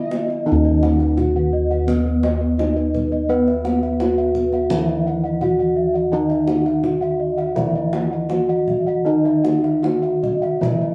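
Opening at once, a mellow bronze metallophone melody struck with padded mallets sits up front over a soft, ringing metallophone accompaniment, with bright bossed-gong arpeggios and shimmering wooden-mallet metallophone arpeggios above, and round, beating bossed gongs carrying the bass, while a tight, distant kendang enters at 0.1 s in this hypnotic, stately Javanese gamelan excerpt at 84 BPM in 4/4 with uneven beats, tuned to A4 = 436 Hz and set in a moderate studio reverb.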